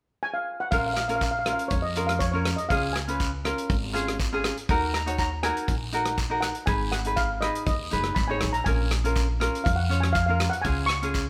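Dramatic and driving, this calypso excerpt moves at 121 BPM in a straight 4/4, with a shimmering, mellow steel pan, played with rubber sticks, carrying the melody up front from 0.2 s. At 0.7 s the rest of the band joins: a bright, fingerpicked ukulele, a woody, thumpy pizzicato upright bass on gut strings, a dry drum kit with a tight kick, hi-hat and rim click, and a raspy guiro sitting lower in the mix. Recorded live together in a large studio with moderate reverb, the group moves through Bbm, Db, Ebm, Abm and Bbm7 before returning to Db.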